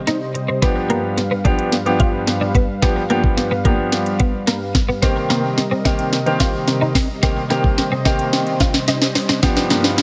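This dance-pop clip in C minor moves at 109 BPM in a straight 4/4, energetic and driving, and it plays as one continuous build-up with a drum fill running throughout. A smooth R&B-style electronic drum kit sits up front, with a knocking kick, a sharp snare and metallic hi-hats. A clean, compressed twelve-string electric guitar picks a riff in a narrow middle range, thickened by ensemble chorus. A clear, polished baby grand piano joins at 0.6 seconds with prominent accompaniment that pumps with the sidechain, while a mellow detuned sawtooth pad holds slow-attack chords underneath with chorus and the same pumping motion. A very quiet downlifter and riser flicker briefly near the start and return from 8.3 seconds. The harmony moves from Cm to G7 and Cm7 before landing back on G7, all set in light reverb with a digital ambience and a somewhat dark top end.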